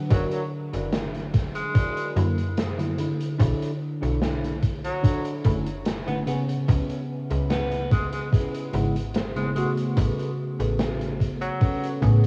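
An overdriven, thumpy electronic kick sits up front in this nostalgic, dreamy vaporwave excerpt at 73 BPM, joined by a saturated, gritty garage kit of hi-hat and snare in a bright stone room, and a snappy FM bass with a metallic attack. A worn, slightly out-of-tune tine electric piano with analog chorus and tape echo carries chords moving from F#7b13 through Bm11 and C#m7 to Amaj9. A dark, fingered semi-hollow guitar riff with subtle chorus and a clear, vintage tenor saxophone melody with vibrato and scooped notes both float in tape echo, all under light reverb and warbling cassette-tape pitch drift.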